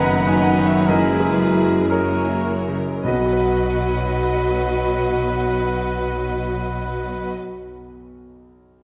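In a rubato 4/4 that slows over the first 3.0 seconds, this lyrical, passionate romantic passage for piano and orchestra sets a brilliant grand piano with long sustain on the melody, shadowed by a clear studio violin section in the background. Pure flutes, an intense chamber violin section and a distant solo oboe weave second lines over focused violas, soft-attack dark horn chords, lush cellos, smooth double basses and round, barely audible timpani, all in a roomy concert-hall reverb. The orchestra falls away at 7.3 seconds, letting the piano ring on alone until 8.8 seconds.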